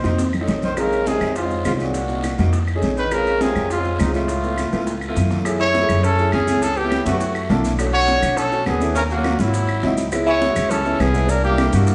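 A drum fill opens this fiery, sophisticated Afro-Cuban jazz excerpt at a brisk 206 BPM in straight 4/4. A vibrato-laden trumpet takes the melody up front over a woody, thumpy pizzicato upright bass, while a mellow, distant tenor saxophone carries a soft-edged second line and a polished baby grand piano supplies warm accompaniment through altered, extended chords in Bb minor. Bright, high-tuned congas, woody claves and a raspy guiro sit in the background, joined by grainy maracas and very quiet, round bongos, all in a roomy live-band sound, before a second fill at 4.7 s leads into a shift to F# minor at 5.5 s.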